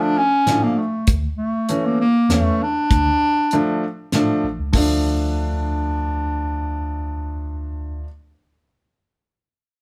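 Klezmer in 3/4 at 99 BPM in D harmonic minor, festive yet bittersweet, this short cut from a longer piece sets a smooth, classical-style clarinet melody over a woody upright piano with audible action noise and long sustain, a clean tine electric piano carrying the bass through its built-in speakers from 0.5 seconds, and a dry, damped 70s drum kit with a fat snare and tight kick that plays from 0.5 to 4.9 seconds, all close and up front in a lightly reverberant room where the band plays live over Dm and A/D harmonies.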